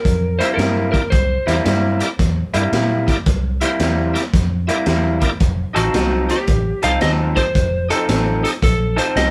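An electric blues shuffle in C mixolydian at 112 BPM, gritty and laid-back, with a swung 4/4 feel that moves from C7 to F7 at 5.4 seconds in this short cut from a longer piece. A punchy, foam-muted fingered bass drives things along with a saturated breakbeat kit that sits up front with a high-tuned snare and rolled-off top, while a lo-fi guitar through a small old amp plays a slightly broken-up riff and a bright tonewheel organ shouts its accompaniment through slow rotary speaker, overdrive and chorus vibrato. A lightly driven lead guitar states the melody briefly at the start, then returns from 5.8 seconds, all set in a moderate studio reverb with the band playing live together.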